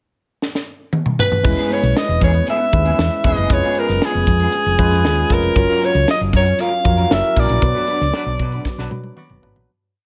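A crisp drum fill opens this breezy, urban 1980s jazz-funk pop piece at 0.4 s at 116 BPM, and from 1.4 s the band settles into a polished sixteenth-note groove with a high-tuned snare and a punchy kick, an agile, round hollow-body bass line, barky tine electric piano pushing chords through lush chorus, and a dark, slightly broken-up rhythm guitar in the background, while a breathy, vibrato-laden alto saxophone sings motif-based phrases up front in a small, lightly reverberant room, until a clear, tight horn section adds punches at phrase ends from 8.1 s as the band accents and fades out.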